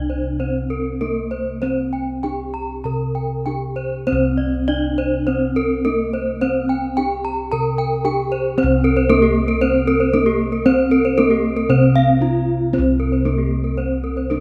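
A moderate stage reverb with a two-second tail gives this ceremonial, shimmering Balinese gamelan passage a sense of a large, resonant space. Set in C slendro with a tuning reference of A4 = 441 Hz, it moves in 4/4 with a straight feel at a tempo between 98 and 116 BPM. A bronze metallophone struck with a wooden mallet carries the melody in a middle register, its paired tuning producing ringing, beating tones. Above it, a second bronze metallophone played with a horn mallet spins bright arpeggios from 0.1 seconds, sitting up front in the mix with the same shimmering paired-tuning beats. Underneath, bossed gongs hit with padded beaters supply a mellow, round bass that is soft yet mid-forward. The music shifts into a new section at 8.6 seconds, and the passage is cut from a longer piece.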